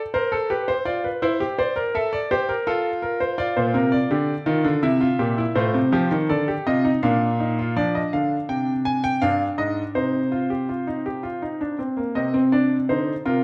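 A classical, baroque-style three-part fugue in triple time for solo baby grand piano, stately yet lively in mood, heard as a short passage cut from a longer piece. The piano sits up front with a clear, intimate, natural tone, long sustain and audible action noise, carried by the wet reverb of a recital hall. Its bright opening harmony darkens at 7.8 s, and a new closing passage begins at 12.2 s.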